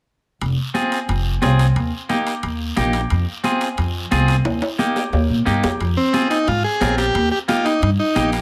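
A straight 4/4 cumbia pulse at 178 BPM drives this passionate Latin piece in F minor, carried from 0.4 seconds by congas, guiro and timbales. The congas sound thick-skinned and high-tuned with hard hands, the guiro is raspy and saturated, and the metal-shell timbales ring close and dry, with a drum fill arriving at 4.5 seconds. Pizzicato upright bass sits prominently in the mix with a woody, thumpy gut-string tone. A bright, picked electric guitar with spring reverb plays accompaniment over chords alternating between Fm and Eb. At 6.0 seconds a buzzy vintage combo organ takes the melody, sitting forward in a dry, detailed, closely miked recording.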